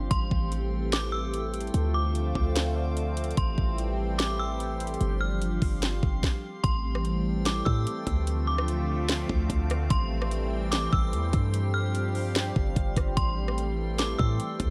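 Melancholic and spacious, this atmospheric cloud-rap excerpt moves at 147 BPM in 4/4 with a half-time feel, set in A minor. The harmony cycles through Am7, Dm7 and G7sus4 over an electronic trap drum kit of knocking kick, sharp snare, rim click and metallic hats. The kit sits up front alongside a deep, boomy 808-style bass with a noise layer. A detuned sawtooth pad sustains the chords with a resonant filter swell, colored by chorus, phaser and sidechain pumping. Above it, a fainter glassy texture of drifting overtones floats on chorus and built-in reverb, while an inharmonic FM bell rings out the melody in a high register through chorus, a low-pass filter and digital delay. A brief stop at 6.2 s gives way to a new section from 6.6 s, and light reverb lends the mix an airy sense of space.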